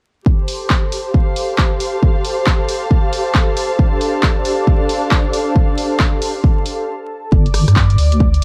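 Soulful and bouncy, this brief two-step UK garage cut at 136 BPM with a swung 16th feel sets a smooth, detuned sawtooth pad and a dark, woody string section breathing under sidechain pumping on a Gsus2 chord, driven by an up-front layered electronic kick and a dry analog drum machine's handclaps, hi-hat and rim click, before a short break at 6.9 s gives way at 7.3 s to a deep, wobbling square-and-sine bass with tube saturation on G5, all wrapped in light reverb and vinyl crackle.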